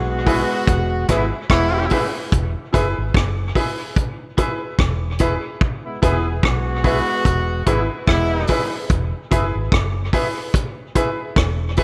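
A rough home-demo sound with light studio reverb frames this short cut from a longer roots reggae piece, laid-back and uplifting at 73 BPM in 4/4 with a swung sixteenth feel, resting on an E chord in E major. Up front, a vintage drum kit plays hi-hat, kick drum and rim click, its tight kick and rolled-off top treated with dub echo. Beneath it, a dark, round, foam-muted fingered electric bass sits low and punchy from the very start. A clear horn section with a smooth top carries a tight second line under tape echo, dropping out at 8.7 seconds. In the background, a clean picked electric guitar adds accompaniment with subtle chorus and tape echo, while a worn, woody, slightly detuned upright piano supplies stabs.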